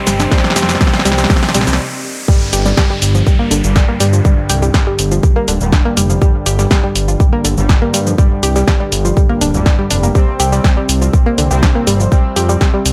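A light reverb and digital ambience surround this excerpt of hypnotic, melancholic melodic techno. It runs at 122 BPM in 4/4 in G minor with a straight feel. The opening build-up sets a very quiet, moody ambient pad on sustained chords against synth brass stabs, an electronic riser and downlifter, a drum fill, and a woody, wave-folded pluck arpeggio under a filter sweep. A brief break leads to the drop at 2.3 seconds. From there the punchy, up-front kick anchors a house kit of punchy snare, bright hats and shaker, and a fat, detuned sawtooth bass pumps against the sidechain. Over this the percussive pluck and the bold, mellow brass carry chorus, delay and the same pumping, while the harmony moves from Cm7 through a third-less G7 chord to C5 at 10.2 seconds.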